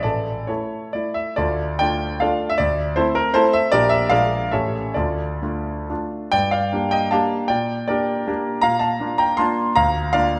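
Dotted rhythms in a lilting 3/4 give this romantic classical dance its sway, and the pulse bends freely under a rubato touch. A solo concert grand piano carries the whole excerpt, its sound clear and natural, sitting up front with a deep bass that reaches down to A1 and a treble that climbs to C6. The mood is nostalgic and wistful, the dance feeling gently remembered rather than driven. The opening section runs until 6.3 s, when the harmony shifts to a new key centre and a second section begins, lasting until the clip ends at 10.4 s. A wet recital hall reverb surrounds the instrument with a lingering, roomy glow.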